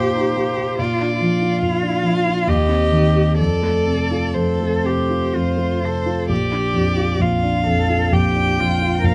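In an unhurried 3/4 with free rubato, moving at roughly 60-73 BPM, this short cut from a slow romantic movement for piano trio unfolds in Bb major with a serene, lyrical mood. A single bowed violin carries the melody between C5 and G5, its rich tone shaped by vibrato, soft attacks and expressive portamento. Beneath it a lone cello sings a second line from F4 to Bb4, equally full and expressive with its own vibrato and soft-edged bowing. The concert grand piano, heard up front and sitting a little louder than the strings, supplies the accompaniment from a deep Bb1 bass up to G4, its smooth, intimate, vintage-toned sound carrying audible action noise. The harmony drifts from Eb over Bb to Bb, through C minor over Eb to F, and settles back on Bb at 6.3 seconds. Close, detailed microphones capture all three players for the full 9.1 seconds inside a moderate stone room with a 1.1-second reverb tail.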